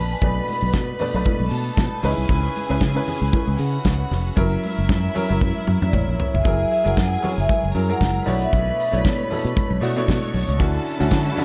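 Sultry and danceable, this disco groove in B dorian moves at 116 BPM with a light swing on the sixteenths. It rests on a dry 70s drum kit with a fat snare and tight kick, a round, foam-muted fingered electric bass up front, and a clear baby grand piano with long sustain in the accompaniment, while a lush bowed string section carries a smooth second line and very quiet congas ring along. Mellow soft-mallet vibraphone with slow motor vibrato sings the melody, sounding briefly at the start and returning at 5.9 seconds during a drum fill, and at 10.6 seconds a second, expressive string section with portamento adds sustained chords as the harmony settles on Dmaj9, all with little reverb.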